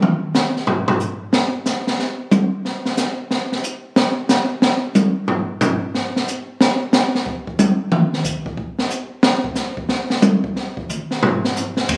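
Heard through a phone in the room, the recording carries a wet, club-like reverb with a 1.2-second tail and a compressed, squeezed sound. This joyful, energetic cut from a longer big band swing piece moves at 182 BPM in 4/4, with a swung eighth-note feel and tuning set to A4 = 444 Hz. An open acoustic jazz drum kit sits up front and takes a solo from the start to 11.9 seconds, working across hi-hat, ride cymbal, snare drum, toms and kick drum. Its cymbals are dark, the snare is tuned high, and the kick is boomy, all with a small-room character. At 11.9 seconds an upright bass arrives for a brief plucked Eb2, woody and steel-strung, lower in the mix than the drums, just as the excerpt ends.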